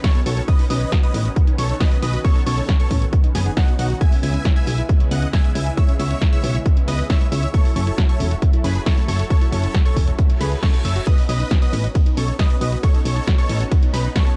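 A dark, warm digital ambience frames this euphoric slice of uplifting trance, cut from a longer piece, with a layered, tape-warm kick sitting up front and driving a straight pulse. A huge, detuned supersaw lead carries the melody, its bright, compressed tone colored by phaser, delay and sidechain pumping, while a round, mellow FM bass joins at 0.3 seconds with a fast, decaying attack. In the background, two lush unison plucks add detail: one traces a high second line, and the other spins arpeggios through tape echo. Both pump along with the sidechain. A silky, nasal analog string pad sustains the chords beneath them, evolving with ensemble chorus and vibrato as the harmony moves from Badd9 through C#m7 and F#m7 and back. A punchy analog drum machine, re-recorded in a small room, supplies hi-hat, ride cymbal and snare. A faint reverse cymbal rises from 10.3 seconds into the return of Badd9 at 11.1 seconds.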